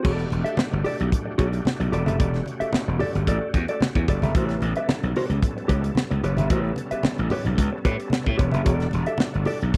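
Funk at 111 BPM in E dorian, driving and sly, built on a growly, punchy slap bass and a tight drum kit with a high-tuned snare, both up front, while a dark, clean guitar supplies fingered, compressed accompaniment. Behind them, a thick overdriven tonewheel organ holds sustained chords through a slow rotary speaker and chorus vibrato, and low-tuned congas with soft hands join at 0.3 s from a distant, large-room position. The harmony moves from Em11 to A9 and back, and the whole cut, lifted from a longer piece, has a dry, close 1970s studio sound with vinyl crackle.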